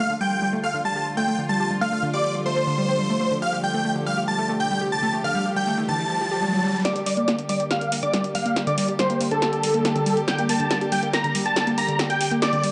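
Driving and euphoric, this uplifting trance fragment at 140 BPM in G minor is carried by a huge, detuned supersaw lead, up front and treated with a low-pass filter and tape echo, while a catchy, mellow plucky unison lead sits in the background and an analog pluck spins round, warbling arpeggios through chorus and delay over reedy, gut-toned studio strings holding sustained chords. A filter sweep moves over the pluck as the harmony rests on Dm, and an electronic riser in the background rises from 4.8 seconds into the shift to Gm at 6.8 seconds. There a punchy analog drum machine arrives up front with hi-hat and snare for a build-up and fill, as filter sweeps move over the leads in a dark production with light reverb.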